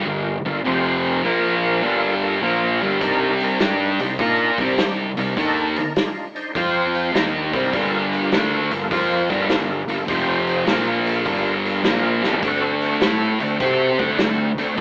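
Gritty and brooding, this clip from a longer piece blends blues rock power trio muscle with a southern rock lean, set to a swung 4/4 feel. A thick, double-tracked fuzz guitar sits up front, playing a bright, picked, distorted riff that moves through minor seventh chords and bare power chords. Behind it, an overdriven tonewheel organ holds full, sustained chords through a slow rotary speaker with chorus vibrato, and a growly fingered electric bass adds overdriven fuzz low in the mix. The acoustic vintage drum kit comes in at 3.0 seconds with a punchy kick, a medium-tuned snare, hi-hat and toms, and plays a fill at 12.1 seconds just before the harmony turns to a dominant seventh chord. The band sounds as if it is playing live together in a stone room with moderate reverb, and the whole track carries a narrow AM radio tint.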